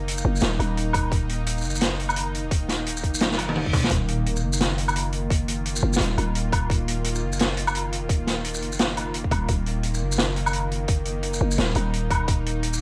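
Dark and tense, this half-time drum and bass excerpt pairs a string-like, detuned drone with 12-bit sampler grit and sidechain pumping against a growling, buzzy 808-style bass, while a mid-forward street-band kit of hi-hat, shaker, snare, toms and woodblock sits up front over a tight, layered electronic kick, and a drum fill breaks through at 3.2 seconds, joined by a brief reverse cymbal at 3.4 seconds.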